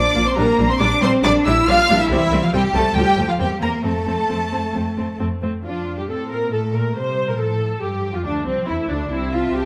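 A dark, expressive first violin section carries the melody with soft attacks and portamento over a clear, intense second violin line, a focused viola accompaniment sitting up front, and a smooth cello section and rich, expressive double bass section underpinning the bass, in this spirited classical-period string orchestra passage in F major at 138 BPM, cut from a longer piece and set in a moderate scoring-stage reverb.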